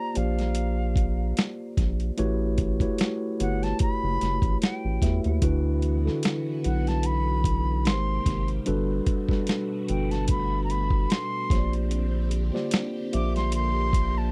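Dry and close, this recording has the intimate feel of a small 1970s studio, with little reverb around the players. It is a smooth, warm slice of neo-soul R&B cut from a longer piece, riding a lightly swung 4/4 groove from a gritty, compressed sampler-style drum kit with a thumpy kick, medium-tuned snare and hi-hat, sitting up front and re-recorded in a small room. Beside it, a rubbery, hollow square-wave bass with a bouncy filter pluck and dark resonance joins at 0.2 seconds, while a clean tine electric piano heard through its built-in speakers carries the accompaniment through lush chords such as Bb69, A13 and G#maj9. A silver concert flute sings the melody from a distance, airy and metallic, with tongued notes and gentle vibrato. At 5.4 seconds a vintage sawtooth string machine fades in behind everything else, its bright, swirling sustained chords colored by ensemble chorus and phaser.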